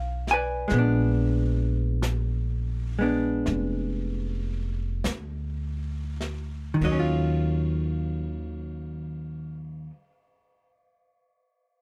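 A smoky, intimate jazz ballad excerpt in Eb minor at a slow 32-48 BPM with a swung feel, easing slower through its first 6.8 seconds as an up-front, clean, compressed hollow-body guitar picks dark chords from Abm7 and Bb7b9 to Ebm9, a woody, thumpy pizzicato upright bass on gut strings sits close beside it, and a softer brushed kit with a boomy kick and dark cymbals drops out at 7.7 seconds, all heard through close, detailed microphones with little reverb.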